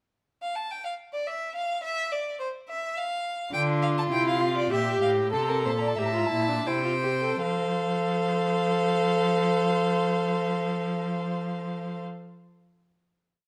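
In a straight 3/4 at 77-107 BPM, this complete baroque-style fugue for string quartet in F major sounds joyful and lively. A clear, focused violin with vibrato opens alone at 0.4 s, and at 3.5 s a dark, airy-bowed second violin, an intimate, soft-attacked viola and a rich, smooth cello join in imitative counterpoint, each bowed by one player. The music slows between 2.7 and 7.4 s before settling on a final F chord held to the end, all set in a moderate stone room reverb.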